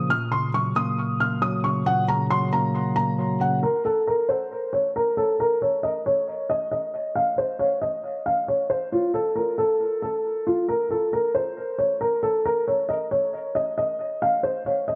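A felt-muted upright piano carries the melody from the start, its dark, boxy tone sitting up front with the soft clatter of its action clearly audible, shaded by a low-pass filter and tape echo. This is a brooding yet hard-hitting hip hop passage in a half-time feel, cut from a longer piece. For the opening 3.6 seconds, a mellow tine electric piano adds clean accompaniment through its built-in speakers, resting on a Gb/Bb chord. Once the electric piano stops, the felt piano plays alone over an unaccompanied stretch while a filter sweep runs across it through to 15.0 seconds. The echo-heavy mix is set in a studio ambience with a moderate spring reverb, giving the intimate piano lines a lingering, shadowy trail.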